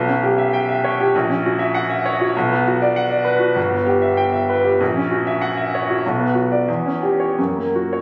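Classical romantic character piece for solo piano in B minor, stormy and brooding, moving at 98 BPM in 2/4 with a free, rubato feel across this 8-second excerpt. The clear grand piano sits up front with an open tone and long sustain, ranging from G1 to G5 as the harmony passes through C#m7b5/B, F#7/A# and Bm before closing on F# at 7.4 seconds. Captured on a phone in the room, the playing is bathed in a wet recital-hall reverb that lingers around each chord.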